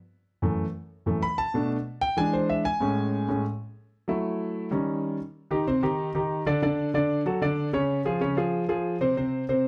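A straight 4/4 pulse at 189 BPM drives this short, danceable and sophisticated jazz excerpt for solo concert grand piano, heard up front with deep bass, audible action noise and an intimate, natural tone in light reverb, moving through F#m7, Bm7, Eaug7 and Amaj7 before shifting at 5.3 seconds to Cmadd9, D and Db until it stops at 9.7 seconds.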